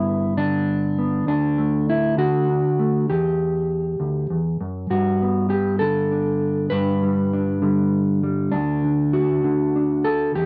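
A mellow, dark and clean fingered electric guitar plays alone and up front from the first second, moving through G, D, Em and back to G before leaving the harmony open at 8.5 s, in a hopeful, pastoral folk passage at 66 BPM in a straight 6/8, caught in a dry, close 1970s-style studio sound.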